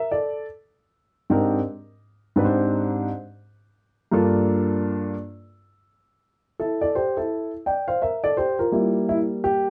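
A lone upright piano carries this short cut from a longer hip hop piece, sounding dark, mellow and woody, with a natural tone placed up front in the mix. It plays by itself from the start to 9.7 seconds, ranging from its low register up into the upper middle. The groove has a lazy sixteenth-note swing, and the mood is nocturnal and smoky. The harmony moves from a lush Abmaj7#11 to Gm9 and settles on Gm6 near the close. A modest small-room ambience surrounds the instrument, and the production is soft and rounded, with the top end rolled off.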